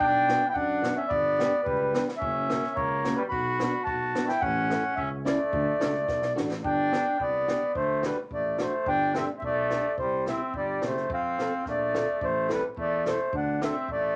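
A straight 2/4 pulse at 108 BPM drives this jolly, festive alpine folk dance band, heard as a short cut from a longer piece. A reedy, mellow accordion carries the melody up front, while a trumpet with light vibrato sits a little distant as the second line, and a dark, punchy tuba holds down the bass. A compact cocktail kit keeps time with a dry, high-tuned snare, tight kick and hi-hat, and a boxy fingerpicked archtop guitar joins at 0.3 s with audible finger squeak. The tune starts in D major, then after a drum fill at 6.1 s it moves into G major at 6.6 s, with the harmony continuing through chords such as C, F and Am. A small, wet room reverb surrounds the band, and a layer of vinyl crackle adds an old-record patina.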